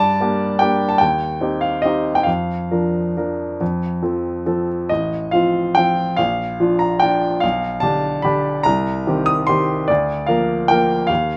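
A clear baby grand piano plays alone in this elegant, playful classical waltz in Bb major, cut from a longer piece and lasting just over 11 seconds. The solo part moves in a rubato 3/4 between 129 and 157 BPM, its polished, up-front tone spanning from A1 to Eb6, while a light reverb gives the room a gentle glow. The harmony opens on G minor and passes through F7 and G7 colours before settling on Bb over D.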